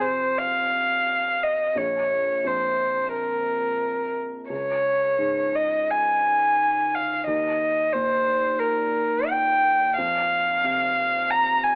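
Neoclassical piano and strings in a melancholic, longing mood, this short cut from a longer piece moves in 4/4 with uneven, rubato timing. A solo violin carries the melody up front and close, its tone soft-attacked and airy, played sul tasto with light vibrato and set in a plate reverb. Beneath it, a felt-muted upright piano keeps to its low register as accompaniment, sitting well back in the mix with a dark, mellow, thick-felt sound and audible action noise. The harmony moves from F5 to Bbm, then Db5 and Eb before returning to F5. The whole recording sounds worn and vintage, like old cassette tape with warbly pitch drift and a thin telephone quality, set in a moderate studio ambience.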